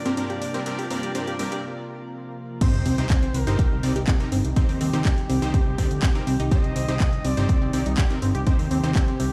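Expansive and emotional, this progressive house excerpt at 123 BPM in C minor opens on a Bbsus2 build-up where a smooth, gliding portamento lead with vibrato sings over a lush, slow-blooming pad, a detuned pluck arpeggio with dub echo, punchy supersaw stabs and a bright-hatted, small-room house kit with handclaps and crash, all pumping under sidechain. At 2.6 s the drop lands on C minor with a background sub drop impact and an overdriven, up-front punchy kick, joined a moment later by a fat, saturated analog bass. The mix is dry yet rings with the stone-room reverb of a bare space on a big sound system.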